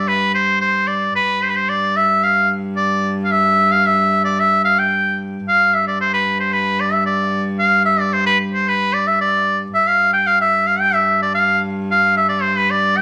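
Recorded live in one room with a wet studio reverb and a softened top end, this short medieval cut in G mixolydian moves at 112 BPM in a straight 2/4, a festive, rustic piece where a bright, up-front shawm sings a folk-style melody with scooped notes and light vibrato over a bowed, fretted viola da gamba holding a ringing, gut-string drone on G2, the tune turning to a new section at 5.5 seconds.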